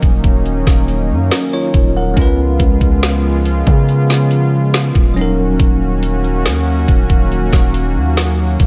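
Contemporary R&B with a sensual, longing mood, this short fragment of a longer piece moves between Ebm7 and Db7 while a bell-like tine electric piano plays clean accompaniment, as if through built-in speakers, over a smooth, detuned sawtooth pad with soft attack and chorus. Beneath them, a deep, mellow sine 808 bass hits with a fast attack and a long, decaying tail. An up-front, produced trap kit supplies a knocking kick, a woody snare and metallic hi-hats, all set in a digital ambience.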